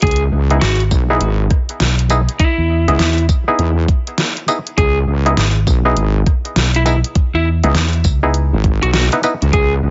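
Swaggering and funky, this glitch hop excerpt at 101 BPM in C# minor swings its 16ths over a C#m9 chord, with an up-front knocking, overdriven electronic kick and an overdriven pop kit with deep snare, hi-hat, rim click and tambourine, a heavy, saturated wobble bass with chorus joined by a growly, amped fingered electric bass from 0.6 to 8.5 seconds, stringy muted clav stabs carrying 12-bit sampler grit, sidechain pumping and tape echo, and a dark, slightly broken-up picked lead guitar melody with tape echo, all set in a digital ambience.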